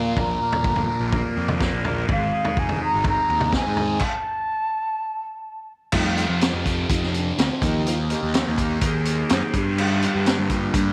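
A small-room sound frames this hazy, trippy psychedelic rock excerpt at 125 BPM in Bb mixolydian, where an airy, hollow flute with slapback echo carries the melody up front until 5.7 seconds over a bright, double-tracked fuzz guitar riff with phaser, an overdriven picked bass, punchy vintage drums with a high-tuned snare, and a soft tonewheel organ on slow rotary speaker that holds chords in the background, then takes a solo at 5.9 seconds after a stop at 4.0 seconds.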